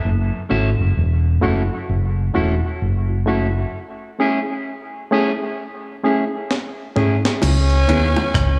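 A slow, swung 4/4 groove at 65 BPM carries this hypnotic, heavy dub reggae fragment, cut from a longer piece. A dark, round fingered electric bass sits up front from the start, while a clean, picked electric guitar and a barky, reedy electric piano with light overdrive add accompaniment and stabs, both trailing dub echo across the F#m7 and Amaj7 chords of the break. At 6.5 seconds a compressed, pitched-up sampler-style breakbeat kit arrives with a drum fill, its thumpy kick, medium-tuned snare and tape-warm grit pushed forward in the mix. At 7.4 seconds the harmony moves to C#m7 as a raspy, growling tenor saxophone takes a solo with a soft attack and light vibrato, soaked in echo. Low-tuned acoustic bongos, also echoed, join in the background, and the whole mix has a small-room, echo-heavy atmosphere.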